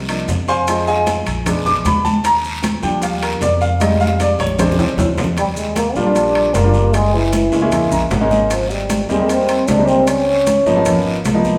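A straight 4/4 groove at 153 BPM drives this sunny, lively Afro-Cuban jazz excerpt in Eb major, cut from a longer piece. A clear, up-front grand piano opens with a solo, its action noise audible, while woody pizzicato upright bass on steel strings holds the low end and a thick-skinned conga sits in the background with grainy maracas, ringing metal-shell timbales, raspy guiro and very quiet, round low-tuned bongos. A drum fill from 3.8 s leads into the second section at 5.4 s, where a cup-muted trombone takes the melody up front, veiled and breathy with soft attacks and scooped notes in an intimate, vintage jazz voice. The piano adds a brief fill between 7.7 and 8.5 s as the harmony moves from Ebmaj9 through Gb9 and Abmaj9 to Db13. The band plays live in one room, wrapped in a wet, large studio reverb.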